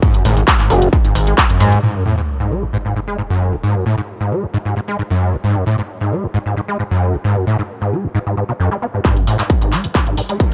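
Dry, gritty hardware sound frames this relentless slice of driving peak-time techno at 133 BPM in straight 4/4, tuned to A4 = 437 Hz, where a squelchy, resonant acid bass riff runs the whole way with 12-bit sampler grit, chorus, delay and sidechain pumping, and a filter sweep moves across it in the opening bars. A distorted, up-front kick and an overdriven kit of handclaps and hi-hats pound under a saturated, wave-folded synth bass until a sub-drop impact lands at 1.8 s, after which the acid line carries on as the drums and synth bass drop away. At 9.0 s the kick and kit return with a drum fill and an electronic riser for the build-up.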